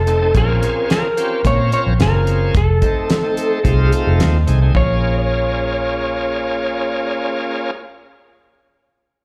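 Heard through a club PA with light reverb, this brooding, smoky straight-eighth soul blues fragment at 109 BPM sets a slightly broken-up, compressed lead guitar melody with slapback echo over a round, foam-muted fingered electric bass up front, a shouting tonewheel organ voiced through a slow rotary speaker and overdrive, and a dry 70s drum kit with a fat snare and tight kick that stops at 4.9 s, as the harmony moves from Bbm7 to F7#9 and back to Bbm7.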